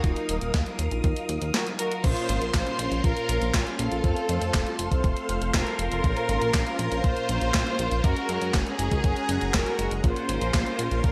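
A filter sweep on an analog polysynth opens this melodramatic, bittersweet italo disco excerpt in Bb minor at 120 BPM, where a smooth studio violin section with light vibrato carries the melody over swirling, bright phased string-machine chords, dark detuned synth-brass stabs, a glossy chorused synth bass with tube saturation, a clean 12-bit drum machine of crash, handclaps, hi-hat and gated-reverb snare, and a thumpy overdriven kick, moving through Ebmadd9, Bbmadd9, F and Gbadd9 chords.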